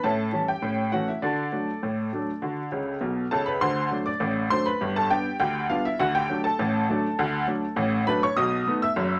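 A bright, slightly detuned upright piano plays a cheerful, playful ragtime excerpt alone at 101 BPM in 2/4 with a straight feel in D major, its worn, woody tone carrying audible action noise and long sustain. Close and intimate in a small, reverberant room under a layer of vinyl crackle, the piano spans F#1 to E6 and breaks into a fill at 2.7 seconds before moving into a new section at 3.6 seconds. The harmony passes through A7, D, D7 and G, closing on B7.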